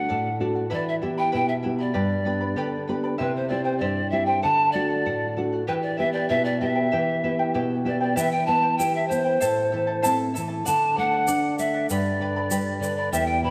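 A wet concert-hall reverb surrounds this wistful, melancholic Andean folk excerpt in E minor, moving at 97 BPM in a straight 2/4. A reedy, airy bamboo pan flute carries the melody up front with vibrato and tongued chiff, over a shimmering, fingerpicked charango with double strings and a dark, thumb-plucked nylon-string guitar giving deep classical support. A grainy, bright egg shaker joins close at 8.2 seconds as the piece moves into its second section.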